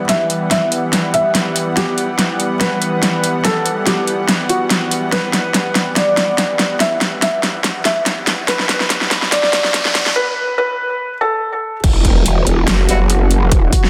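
A growling, detuned growl bass with chorus and overdrive crashes in at 11.8 s alongside a punchy electronic kick, launching the drop of this menacing, aggressive heavy wobble dubstep excerpt in E minor at 143 BPM, felt in half-time with a light swing. Before that, a soft felt-muted upright piano carries the melody through digital delay, with audible action noise, over a lush, sidechain-pumped supersaw pad on an Emadd9 chord. Meanwhile a dubstep drum kit with a huge snare and metallic hats plays a fill as a filter sweep builds to a short break, and a very quiet riser and impact sits beneath. A brief stab from a warm brass ensemble lands inside the drop, all within a dense, heavily limited mix touched by a moderate plate reverb.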